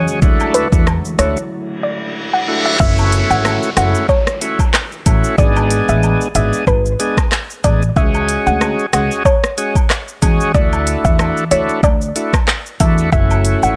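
A dry, close mix with little reverb frames this short dancehall excerpt in F# minor, moving at 93 BPM in 4/4 with a 16th-note swing that gives it a bouncy, tough feel. Up front, the electronic afro-pop drum kit pairs a deep kick with smooth hats, handclaps, rim click and shaker, all roughened by vintage 12-bit sampler grit, while a woodblock and cabasa sit in the background with a small-room acoustic tone. Underneath, a pizzicato upright bass growls with a woody, steel-string bite, and a thick, overdriven tonewheel organ with audible key click churns through a slow rotary speaker and sidechain pumping. A soft, round pluck carries the melody with a fast, decaying attack, its dark, detuned tone thickened by chorus and delay. In the opening seconds, a deep, moody ambient pad holds sustained chords until 2.8 s, while a break begins at 1.5 s and electronic reverse cymbal and downlifter effects enter at 1.8 s. 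From 2.8 s the harmony moves through F#m7, G#dim and C#sus4 before returning to Dadd9 and F#m7.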